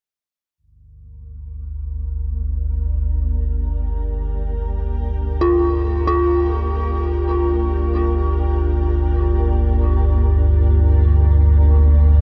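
Ominous and unsettling, this dark ambient drone in G minor drifts in free time, resting on a single G minor chord in a passage cut from a longer piece. An analog drone sits up front from 1.2 s, a sawtooth and pulse-wave tone with pulse-width modulation, slow attack and long release, lightly thickened by subtle chorus while a filter sweep runs through it. A granular cloud pad fades in at 2.3 s, holding sustained chords between Bb3 and Bb4 in a blurred, detuned unison of sine and sawtooth that sits quietly within its own reverb and a shimmer reverb. From 5.4 s a dark, detuned FM bell plays eerie, inharmonic arpeggios on F4, each fast-attack note decaying into chorus, phaser, a diffuse ambient delay and shimmer reverb. The whole recording carries light reverb and the worn, warbly pitch drift of old cassette tape.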